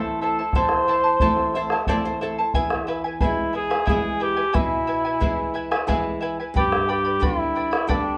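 A small room with moderate reverb frames this short cut from a longer Andean folk piece, played by an Andean ensemble in a wistful, melancholic 3/4 at 90 BPM with a straight feel. A dark cor anglais carries the melody up front in a classical style, with light vibrato and a distant, roomy solo voice. Beneath it, an up-front fingerpicked charango shimmers on its double strings, some of them octave-doubled, while a warm, fingerpicked acoustic flamenco guitar fills out the accompaniment, and a nylon-string guitar fill appears from 1.2 to 2.5 seconds. The deep bombo enters at 0.5 seconds, sounding distant and large-roomed yet still up front. The harmony moves from A minor to E and then to G.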